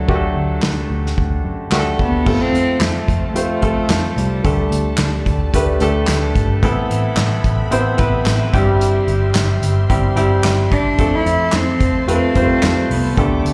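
This uplifting piano-driven pop excerpt opens with a clear, open concert grand carrying the accompaniment over a deep low end, joined at once by a soft, pure cello melody, bowed sul tasto, and a round, foam-muted vintage electric bass. An acoustic drum kit comes in with a punchy kick, a medium-tuned snare, dark cymbals, hi-hat, crash and handclaps, played with bundle sticks and placed up front. The tempo sits at 110 BPM in 4/4 with a light 16th-note swing. At 2.3 seconds a woody studio string section with light vibrato slips into the background with sustained chords. The floating, distant cello drops out at 5.0 seconds and returns at 10.7, over a progression moving from D through F, Dsus4, Amadd9 and C/G back to F. The whole performance is heard as a live gig through the venue's PA, with club reverb and a small-room ambience.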